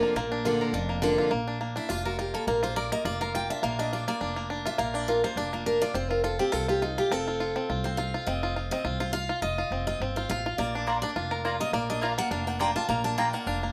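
Rustic and virtuosic, this bright bluegrass excerpt in Bb major races along at 207 BPM with a light swing, as a full-bodied, up-front picked dreadnought guitar with audible finger squeak takes a solo from 1.3 seconds over twangy fingerpicked banjo arpeggios and a woody pizzicato upright bass, while a mandolin's doubled strings add stabs from 10.9 seconds, all in a moderate studio reverb as the chords move from Bb to F and back.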